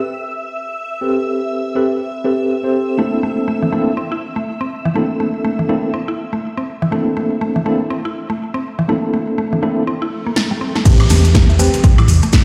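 Swung 16ths at 122 BPM in 4/4 drive this moody, deep house excerpt, where silky string-machine pads hover while a worn, slightly out-of-tune tine electric piano with tremolo and tape echo stabs over Am9 and Bbmaj9#11 alongside woody, pumping synth-pluck arpeggios, until a background swell and downlifter and an overdriven drum fill with punchy snare and metallic hats lead at 10.9 seconds into a drop carried by a deep, up-front kick, a dark, round hollow-body bass, grainy maracas and a brief burst of bright congas, all set in a lush hall and a stone room.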